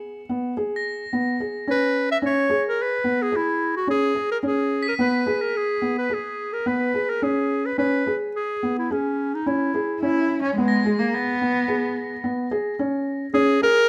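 A clear, close-miked clarinet carries the melody from 1.7 seconds in a classical solo style, standing up front in this pensive yet urgent piece of contemporary chamber music. Beneath it, a felt-muted upright piano plays soft, intimate arpeggios from the opening moment, its thick felt giving a mellow, muffled tone. The music moves at 108 BPM in an uneven 5/4 metre with a straight feel, set in C# dorian and opening on a G#m/B chord. High crotales struck with plastic mallets add a shimmering, bell-like texture in two brief passages, the second arriving near 10.7 seconds. A single bowed cello enters at 10.0 seconds with a dark, woody second line coloured by vibrato. Light reverb and detailed microphones keep the sound close, and the passage is cut from a longer piece.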